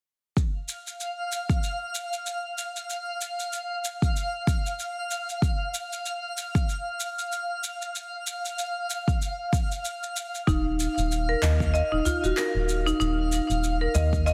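A deep, layered electronic kick drum sits up front in this meditative, mystical slice of organic downtempo, moving at 95 BPM in 4/4 with a 57% swing on the sixteenths. It is joined from the start by electronic shaker and handclaps, re-recorded in a small room, and by a twinkling granular texture on F5 that sparkles with an octave-up shimmer, slow attack and long release inside its own built-in reverb. The harmony rests on an Ebsus2 chord from 0.4 seconds. At 10.5 seconds a woody marimba struck with hard mallets enters with arpeggios between Eb4 and Eb5, its vintage, band-limited tone fed through a digital delay, alongside a round analog bass spanning Eb1 to Eb2 that is dark, sustained and up front. A very quiet, deep udu slips in at 11.4 seconds, and the whole mix sits in a lush hall reverb under a heavily compressed, radio-like sound, as a short cut from a longer piece.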